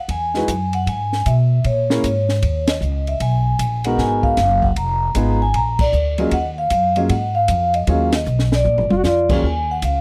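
A dry, close studio sound in a 1970s style, with little reverb, frames this short cut from a longer small-group swing and bop piece in Eb minor, moving at 154 BPM in a swung 4/4 with a cool, late-night mood. Soft-mallet vibraphone carries the melody up front, its ringing, airy tone colored by a slow motor vibrato. Beneath it, pizzicato upright bass on gut strings sounds woody and thumpy, while a concert grand piano with deep bass and long sustain plays accompaniment through chords such as Ebm11 and Bb7b13. A compact cocktail kit with dark cymbals, a high-tuned snare and a punchy kick sits a little lower in the mix, joining the band on accents at 2.6 and 5.7 seconds and playing a fill near the end. A breathy, close-miked trombone enters briefly at 8.9 seconds with a short second line.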